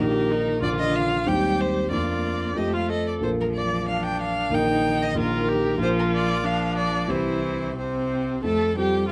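A light reverb surrounds this short cut from a longer chamber piece, with the violin and the grand piano set up front. It is a quick, spirited classical-period movement for piano quartet in two, played with a lively, rubato feel. The bowed violin carries the melody in a focused, vibrato-laden voice with a smooth top, while the cello shapes a second line beneath it, expressive and marked by portamento. The viola fills in the accompaniment with an even, smooth tone. The dark, mellow grand piano has a vintage character and long sustain, anchoring the harmony from its low register upward. All four players sound together throughout, and the harmony settles toward a new key centre from 5.8 seconds before the passage comes to rest on F at 8.4 seconds.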